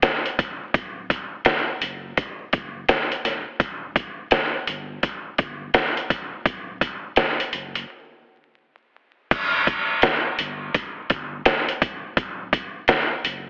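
This boom-bap hip-hop groove rides at 84 BPM in 4/4 with a 63% 16th-note swing, sitting in E minor with a tough, dark mood. A sampler-style drum kit, pitched down and gritty, carries the beat from the start, its thumpy kick and medium-tuned snare up front alongside hi-hat and crash cymbal. A deep, round sine sub bass enters at 0.4 seconds, holding low between D1 and G1 with a fast attack and sustained notes, tucked well beneath the drums. A break arrives at 7.9 seconds, and a new section follows at 9.3 seconds, carrying on to the end of this cut from a longer piece. The overall sound is squashed and lo-fi, with heavy multiband compression, a telephone-like radio tone, vinyl crackle and a light digital reverb.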